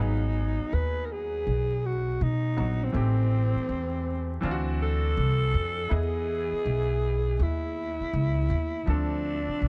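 A growling alto saxophone leads this mellow, smoky hip hop excerpt, carrying a jazz-style solo melody up front with a breathy, raspy tone, gritty edges, a smooth top and vibrato, all trailed by an analog delay. Beneath it, an upright bass played pizzicato sits close and woody, its steel strings giving a warm low end across the full 9.7 seconds. A clear but worn grand piano supplies accompaniment further back in the mix. The groove moves at a relaxed 81 BPM in 4/4 with a swung sixteenth-note feel, and vinyl crackle hangs over the studio ambience. The harmony drifts through jazzy seventh and extended chords, from G#m7 through Am7, D9 and Emaj7 before landing on Dm7, in a passage cut from a longer piece.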